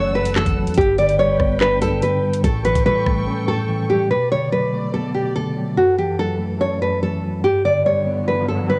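A home cassette recording with light reverb and a digital ambience frames this cold, ominous drill excerpt in B minor, taken from a longer piece and set at 144 BPM in a half-time feel. A full-bodied, fingerpicked nylon-string guitar carries the melody up front, colored by a cassette tape effect and an analog delay, while a mellow tine electric piano, clean and heard as if through its built-in speakers, plays accompaniment, also up front. Dark, veiled strings bowed con sordino by a studio section hold sustained chords with vibrato and a smooth top beneath them, over a harmony moving from F#m7 through G and A7 to Bm7. The electronic drill kit of knocking kick, metallic hats, handclaps and rim clicks joins a deep, sine-toned 808-style bass with a fast attack and long decay, but both drop out by 3.3 seconds. Only the guitar, piano and strings carry on after that break, and a background riser enters at 7.8 seconds to close the passage.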